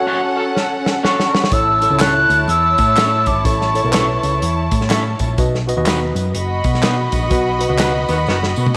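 Bathed in a moderate echo-chamber reverb, this swung, danceable 1960s-style soul excerpt opens on a band accent and drum fill with lush bowed violins, a worn, lightly overdriven tine electric piano, twangy spring-reverbed guitar stabs and a tight vintage horn section, before a pure, hollow concert flute with slapback echo carries the melody from 1.1 to 4.9 seconds over an airy country drum kit with a punchy kick, a dark, round hollow-body bass and background tambourine and handclaps, the horns returning at 8.1 seconds.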